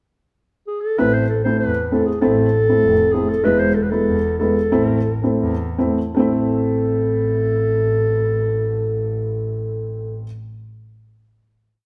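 Bittersweet yet festive, this short klezmer piece in A harmonic minor moves in 2/4 at 74-98 BPM, opening with a clarinet pickup at 0.7 s whose smooth-topped, classical-style solo spins a modal melody with ornaments; from 1.0 s a woody, boxy upright piano with audible action noise adds syncopated triad chords, and a bowed double bass with vibrato plays root and fifth on the main beats, the trio slowing from 3.4 s before settling on a final chord, all three up front in a wet stone room where the band plays live together.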